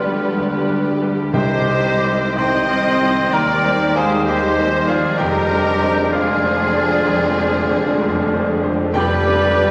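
Romantic classical music for piano and orchestra, passionate and tragic in a rubato 12/8, with a clear, deep-bassed concert grand and a lush, vibrato-rich violin section carrying the melody over mellow clarinet, hollow silver flute, oboe and a portamento-tinged second violin line, dark woody violas, a tight French horn section holding sustained chords, tuba, double basses and cellos anchoring the bass, and soft-malleted timpani sounding round in the background from 1.3 to 2.3 seconds, all bathed in a scoring-stage reverb with a veil of vinyl crackle.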